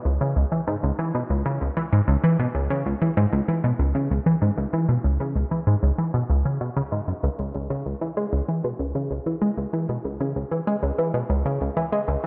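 In a straight 4/4 pulse at 96 BPM, this mysterious, expansive ambient fragment in C# minor sets a lone, driving sequenced synth up front from 0.1 to 12.3 seconds, its detuned sawtooth and square tones marked by a filter pluck and treated with chorus, phaser and delay as it moves between C#2 and G#3, all bathed in a wet spring reverb within an echo-heavy mix.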